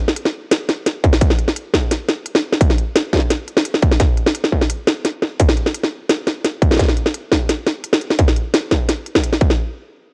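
A half-time feel at 172 BPM in 4/4 drives this dark, heavy excerpt of half-time drum and bass, cut from a longer piece. An industrial drum kit starts at 0.1 seconds, its clanging snare set against smooth hi-hats, both sitting up front with a tape-warm grain. At 1.0 seconds a distorted electronic kick drum enters, also forward in the mix and slightly louder than the kit, its cassette saturation adding grit to the low end. The whole passage stays in a single section and runs to about 9.6 seconds. There is little reverb, and the home cassette recording gives the drums a close, dry, lo-fi character.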